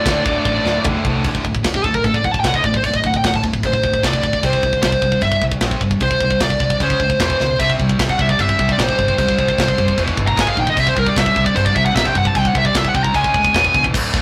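Dark, heavy metal opens on a stack of bright, picked high-gain rhythm guitars and an up-front distorted lead, with the tight acoustic drum kit of kick, snare, toms and china and crash cymbals playing a fill that drives into a warm lead guitar solo from 1.3 seconds, while a dark, round hollow-body bass anchors the low end, a double-tracked scooped guitar drops out and returns at 7.6 seconds, and light reverb frames the rough rehearsal-room sound.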